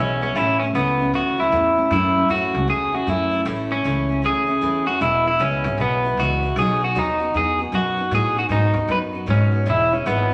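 A large, wet studio reverb surrounds this short, rowdy rockabilly excerpt, which swings at 154 BPM and moves through chords of A, E and B before landing back on E at 9.7 seconds. Up front, an electric guitar through a small old amp carries the melody with a twangy, slightly broken-up, compressed tone and a splash of spring reverb. Underneath, a bright, full-bodied steel-string acoustic guitar picks the accompaniment with audible finger squeak, while a woody, thumpy upright bass on gut strings plucks the low end throughout.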